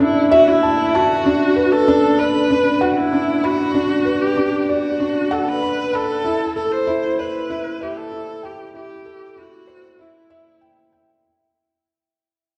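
Over a straight 4/4 pulse, this hypnotic, moving electronica fragment opens on a drop and begins fading out from 1.2 seconds, with the harmony shifting from Dsus2 to Bm and then Am7 at 6.2 seconds. A felt-muted upright piano carries the riff up front, its mellow, intimate tone edged with audible action noise and a vintage character. Alongside it, a single bowed viola sings the melody with vibrato, soft attacks and expressive portamento, all wrapped in a wet recital-hall reverb.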